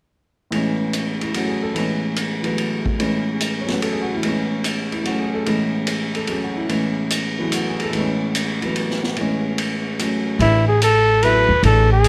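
A swung 3/4 pulse at 146 BPM drives this spiritual, searching modal jazz excerpt in A major, cut from a longer piece. From 0.5 seconds a vintage drum kit plays hi-hat, kick, ride and snare with dark cymbals, a high-tuned snare and a punchy kick, its rolled-off top sitting mid-forward in a studio room. An intimate concert grand piano accompanies on an Amaj9 chord, its deep bass and audible action noise giving the playing a natural, close presence. At 10.4 seconds the harmony moves to Amaj7sus2 as a woody pizzicato upright bass on steel strings enters with a dark, up-front tone. At the same moment a warm jazz trumpet takes the solo melody with light vibrato, standing out as the most prominent voice until the close at 12.1 seconds. Light reverb places the group in a shared space.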